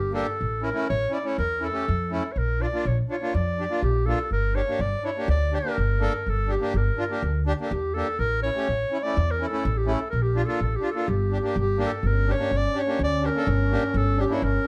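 Bittersweet and soulful, this klezmer fragment, cut from a longer piece, moves in a straight 4/4 at 124 BPM in G dorian sharp4 and speeds up across its 14.7 seconds. A clear, soft-attacked clarinet carries the melody up front in a classical style, ranging from G4 to D5 and set in plate reverb. Beneath it, a woody upright bass played pizzicato on steel strings holds the low end from G1 to F2, while a reedy, single-reed accordion with dry tuning supplies accompaniment with a boxy small-room character. The harmony circles through A, Bb and Gm, and at 12.0 seconds a mellow, close-miked trombone joins with a jazz-style second line on C#4 with vibrato. The whole sits in a moderate studio reverb.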